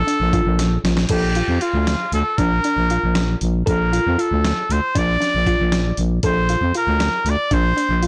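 A clear trumpet with light vibrato and scooped notes carries the melody up front over a growling, thick FM bass, opening this bright, driving progressive instrumental in 5/8 at 233 BPM in Bb major, moving from Bbmaj7 to Bb. A tine-like synth pluck with chorus and tape echo plays arpeggios in the background, while a dusty, gritty sampler-style drum kit with a thumpy kick and crash cymbal plays a fill from 0.6 to 1.1 seconds. The whole recording is blown-out and overdriven in a digital ambience, and it is a cut from a longer piece.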